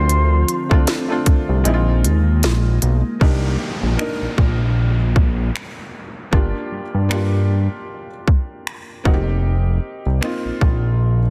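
This short cut from a longer contemporary R&B track has a dense, heavily limited modern sound in a digital ambience, moving at a late-night, longing 77 BPM in C minor with a swung 16th-note feel. A fat, saturated analog bass and a trap kit with a hard-clipped kick, crisp hats, finger snaps and a sharp, soft-clipped snare sit up front, with the kick dropping out between 1.7 and 3.2 seconds. A felt-muted upright piano plays intimate, mellow accompaniment throughout, while a glassy FM pad with ensemble chorus and reverb and a brief dark, octave-layered synth lead with chorus and tape echo open the piece before an electronic downlifter sweeps in at 3.2 seconds over chords moving from Cm7 to Gm7 to F9sus4.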